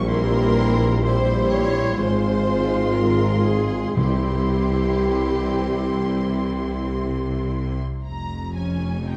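This excerpt of a slow, rubato romantic movement in F minor opens with full symphony orchestra at 57-64 BPM: a lush, vibrato-laden violin section carries a yearning high melody over smooth violas, focused cellos and a distant double bass section, while a second violin line, airy flute, mellow clarinet and a roomy oboe weave secondary lines in the background. Very quiet horn and trombone sections hold clear sustained chords above a tuba in the low register, and close, dry timpani struck with hard mallets sound briefly from 4.0 s as the harmony moves from C7/Bb through Fm/Ab to C. The winds and brass fall away by about 7.7 s, leaving the strings to settle on F minor in a dark, melancholic production with moderate scoring-stage reverb.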